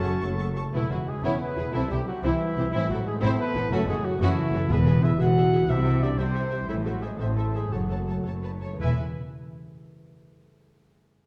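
In 6/8, this heroic, adventurous film-score passage opens with brief touches from a bright oboe, airy flutes and very quiet trombones as lush violins carry the melody over a second expressive violin line, violas, tight sustained French horn chords, ringing harp arpeggios, clear and distant trumpet stabs, rich cellos and woody double basses. Timpani strike at 4.7 and 8.8 seconds, and the music slows from about 6.2 seconds, all set in a dark, wet scoring-stage reverb.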